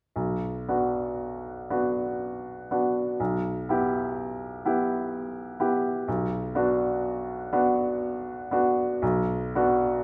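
A classical excerpt in B minor, elegiac and solemn, moving at a slow 61 BPM in 3/4 with uneven, rubato beats. A bright baby grand piano carries the accompaniment from 0.2 to 10.0 seconds in a low-to-middle register, its brilliant, open tone sitting up front within a wet recital hall reverb. The harmony shifts from B minor to E minor over a B bass and back to B minor.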